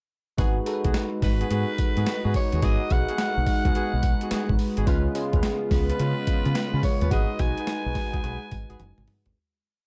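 At 0.4 seconds this bouncy, slick new jack swing piece opens with everything but the melody at once: a gritty, overdriven sampler-style drum kit sits up front with a thumpy kick, medium-tuned snare, hi-hat, tambourine and toms in a hard-swung drum-machine beat at 107 BPM. A deep, round fingered electric bass plays a bouncy, swung synth-funk line with muted ghost notes. A bell-like tine electric piano adds bright, clean push-rhythm chords with grace notes through an analog chorus, while a brassy, detuned analog pad holds evolving sustained chords in the background and a mellow horn section fires short, syncopated jazz stabs. At 1.2 seconds a raspy, forceful alto saxophone enters with a motif-based pop melody carrying light vibrato, moving over a G# minor seventh to C# seventh progression in G# dorian. The dark production with light reverb begins fading out at 7.1 seconds, and a drum fill closes the short piece.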